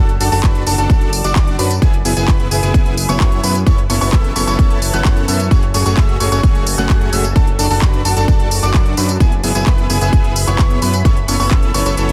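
A dense, heavily limited modern master with digital ambience carries this emotional, anthemic festival progressive house excerpt at 130 BPM, where a punchy, up-front electronic kick leads the mix from 0.4 to 11.6 seconds over a big-room dance kit of crisp, tape-warm hi-hat, handclaps and tambourine. A fat analog bass with a filter sweep and a huge, detuned supersaw riff both pump with the sidechain, the supersaw trailing digital delay, while a clear, intimate baby grand piano plays high arpeggios with audible action noise and its own delay. Behind them a lush, bright unison pad holds sustained chords through chorus and phaser, the harmony circling over an F# pedal from D/F# through E/F# and Aadd9/F# to F#madd9.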